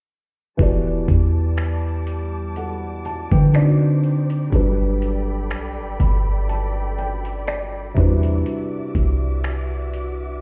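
At 0.6 seconds a late-night, moody contemporary R&B groove in E minor begins at a slow 61 BPM with a light sixteenth-note swing: gritty, overdriven sampler-style drums with a thumpy kick, hi-hat and finger snaps sit up front beside a deep, round 808-style bass. A felt-muted upright piano with audible action noise plays intimate accompaniment through Em11, D7b9, Gmaj9 and Cmaj9#11, adding a fill from 5.5 to 8.5 seconds, while a veiled, con sordino string section holds quiet bowed chords with vibrato beneath. The whole mix sounds muffled, as if heard through a wall, inside a stone-room reverb, and the piece is cut from a longer work.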